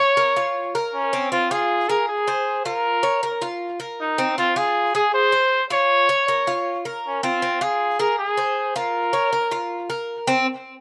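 The sound is dry and open, captured outdoors with barely any reverb, and both instruments sit up front with a short slapback echo on each. This sultry, danceable Latin excerpt moves at 157 BPM in a straight 4/4, tuned to A4 = 441 Hz. The harmony sways between Bb minor and F minor throughout. A warm, punchy trumpet carries the melody as a pop-style solo with light vibrato and a vintage character, ranging from Db4 to Db5 and closing at 9.9 seconds. Beneath it, an acoustic Cuban tres picks metallic arpeggios on its doubled strings, some of them octave-doubled, ranging from C4 to Db5 and sounding a little softer than the horn until the fragment ends at 10.5 seconds.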